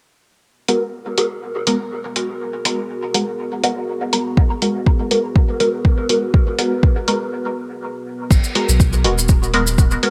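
Dub techno at 122 BPM in G# minor, this hypnotic, hazy cut from a longer piece rides a lightly swung 4/4 groove over a single G#m9 chord. A muted, nasal filtered dub chord stab sits up front from 0.7 seconds, its resonant sawtooth plucks colored by phaser, sidechain pumping and dub echo. It shares the opening with a lo-fi sampler-style drum kit of pitched-down, muffled crash and hi-hat. A dark analog pad joins at 1.6 seconds with slow-attack, detuned chords treated with chorus, phaser and pumping, and a layered, tape-warm electronic kick drum lands up front at 4.4 seconds. After a short break, the closing section from 8.3 seconds adds a round sine sub bass and grainy, saturated maracas, while a second, detuned stab riff with chorus and dub echo flickers briefly in the background. Light reverb and bright 1980s-style digital production frame the whole.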